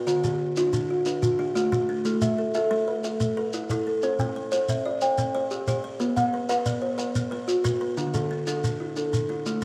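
Two kalimbas open together in this hypnotic, rippling cut from a longer southern African traditional piece, weaving a mbira-style interlocking cycle of arpeggios in a straight 12/8: one mellow and woody with a hollow-box ring, soft fingertip plucks and a slapback echo, sitting up front; the other bright and buzzing, thumbnail-plucked, close and dry. A grainy acoustic shekere joins at 0.1 s. Moderate echo-chamber reverb and small-room ambience surround the cycle as the harmony moves from D through Am, C and Bm before returning to D at 8.0 s.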